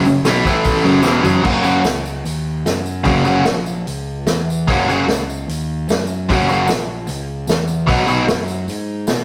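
A biting, double-tracked overdriven guitar riff leads off this swaggering, rowdy garage rock excerpt, joined at once by a fuzzy picked electric bass and a jingly tambourine tucked in the background, with a vintage drum kit of punchy kick, medium-tuned snare, hi-hat, toms and crash arriving at 0.2 seconds. A drum fill at 1.1 seconds launches the straight 4/4 groove into its main section, with chords moving from A5 and F#5 to F# and later B, and the guitar dropping out at 8.3 seconds while bass, drums and tambourine carry on. The rough rehearsal-room sound has tube saturation and a wet stone-room reverb, while the drums keep a rolled-off top.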